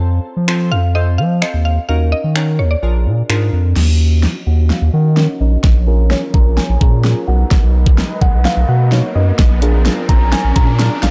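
A thick, saturated sub bass sits up front in this driving, confident dance-pop excerpt, its fast attack and sustained notes pumping against the sidechain from the very start. A knocking, overdriven electronic drum kit joins at 0.5 s, layering a fat snare, hi-hat, crash cymbal and finger snaps over the kick with a small-room punch. A woody, mallet-like FM pluck carries the melody with round, mellow decaying notes treated with chorus, tape echo and a low-pass filter. Beneath it, glassy digital keys with chorus and phaser fill out the accompaniment, pumping and sweeping through their filter. From 3.8 s the piece becomes a build-up, with a drum fill, a filter sweep and a distant, airy flute ensemble adding tongued, vibrato chords, and a background riser arrives at 6.1 s. The production is dark and dry, with little reverb.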